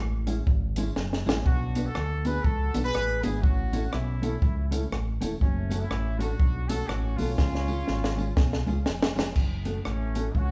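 A swung, driving ska groove in 4/4 opens on round, punchy fingered electric bass, joined at 0.3 s by a compact cocktail drum kit with a high-tuned snare and dark cymbals, a clean, compressed mellow electric guitar, and a jingly tambourine tucked in the background. A tight, clear horn section enters at 1.5 s carrying the melody with vibrato. Drum fills at 1.0 s and 7.4 s give this mischievous fragment of a longer piece its push, the second leading into a new section at 9.4 s. The band plays live together in a large studio with moderate reverb.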